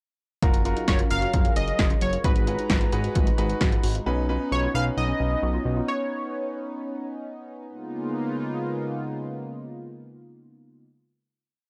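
A dry, gritty hardware recording with transformer saturation and little reverb frames this short, wistful yet upbeat synth-pop piece at 132 BPM in Db mixolydian, moving through a brief pre-chorus over Gbmaj7, Abm7 and Cbadd9 before settling on a held Db13 at 7.7 seconds. A punchy analog drum machine sits up front with a straight beat until 4.1 seconds, while a fat, detuned sawtooth bass pulses in eighth notes, a clear concert grand plays syncopated close-voiced chords, and a soft, round pluck with chorus and analog delay repeats a dark ostinato in the background. A funky, chorused polysynth comp with a filter sweep carries the motif-based melody from 0.9 seconds, and a shimmering, retro pulse-width pad with a slow attack sustains chords into the closing Db13.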